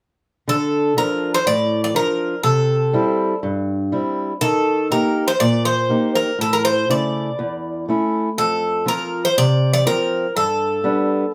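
Captured live in one room with a wet studio reverb, this short Greek folk excerpt from a bouzouki band moves at a driving 121 BPM in straight 4/4 and D minor, with a dramatic mood. Up front, a bright, metallic bouzouki picks the melody on double strings, some doubled at the octave. Beside it, a dark, boxy parlour-style steel-string acoustic guitar is fingerpicked with audible finger squeak, and both instruments play from 0.5 seconds through a progression of Dm, C, Eb, A, F and G.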